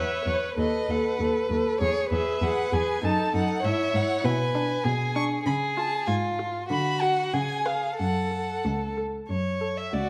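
Heard in a moderate recital-hall reverb, this cheerful, lively classical-period string quartet passage, cut from a longer movement, moves at 90-100 BPM in a rubato 2/4, with a distant, focused first violin singing the rich, vibrato-laden melody above a close, expressive second violin and viola that shape their inner lines with soft attacks and portamento, while a smooth, even cello anchors the bass up front as the harmony turns from E major toward F# minor at 4.3 s and the viola drops out at 9.8 s.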